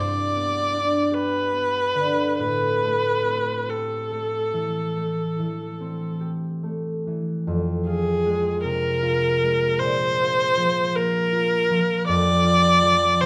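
This is an impressionist classical duo for viola and harp, mysterious and wistful in mood, moving slowly in a rubato 12/8 at about 45-54 BPM counted in dotted quarters. A single bowed viola carries the melody up front, its tone smooth and even with vibrato and a smooth top, singing between Ab4 and D5. The concert harp accompanies from F2 to G4, its thumb-plucked strings acoustic and ringing, sitting close and just beneath the viola. The harmony starts in A minor, moving from G to Am7, then shifts to F minor at 7.5 s, where Fmadd9, Bbsus2 and Fm6 chords lend a hazy, unresolved colour. A moderate recital hall reverb gives both instruments a warm sense of space in this passage, cut from a longer piece.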